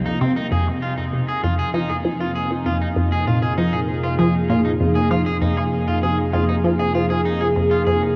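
A squelchy, ring-modulated blip pluck drives a mysterious, expansive stretch of sequencer-driven ambient space music through phaser and analog delay, over a sweeping, detuned pad with lush chorus, twangy slightly broken-up guitar arpeggios, and a round analog bass entering at 0.5 s deep in the background, all bathed in huge reverb and the warble of worn cassette tape.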